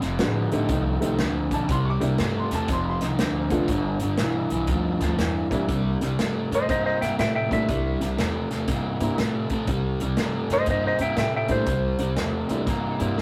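Captured in a rough rehearsal room with tube saturation and a small-room ambience, this laid-back, rollicking electric blues shuffle at 120 BPM in C mixolydian rides on an up-front overdriven semi-hollow guitar riff, woody, short-sustain upright piano accompaniment, pizzicato upright bass and a natural country drum kit with a punchy kick, and at 6.5 s a clean, slide-played lap steel guitar joins on top to carry the melody.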